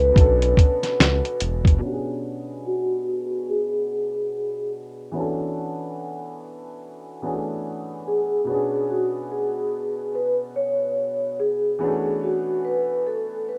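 A soft-mallet vibraphone carries the melody up front from the start. It is metallic and ringing with a fast motor vibrato, and its analog delay and low-pass filter place it in a boxy small room. Beneath it, a clear upright piano plays accompaniment: woody, worn and slightly detuned, with long sustain and a cassette-tape haze. This is a nostalgic, reflective lo-fi hip hop excerpt at 72 BPM in B dorian, swung on the sixteenths. A smooth gliding synth bass with sawtooth and triangle tones and portamento sounds from the outset, and a sampler-style drum kit enters at 0.2 seconds, up front, compressed, pitched down and muffled, with a thumpy kick, fat snare, hi-hat and finger snaps. Bass and drums stop at 1.8 seconds, leaving vibraphone and piano to continue through a filter sweep over chords alternating between Bm69 and E13sus4 until 13.6 seconds, all within light reverb and a rough home-demo mix.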